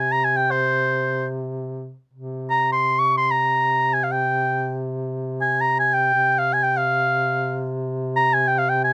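Arabic maqam ensemble music in free time and C maqam hijaz, soulful and longing, where a warm oboe, up front with light vibrato in classical style, carries the melody across a range of C5 to Db6+25c over a dark duduk drone on C3 with folk-style vibrato, both sounding for the whole 8.9 seconds of this short cut, captured by close, detailed microphones with light reverb.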